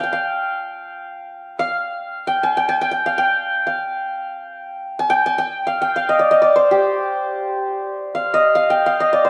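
A shimmering, ringing santur plays up front in free time through this brief, melancholic and longing cut from a longer Persian modal piece in dastgah shur on G, tuned to A4 = 439 Hz, its hammered acoustic tone ranging from G4 to a microtonally raised Ab5 within a wet stone room and carrying lossy compression artefacts.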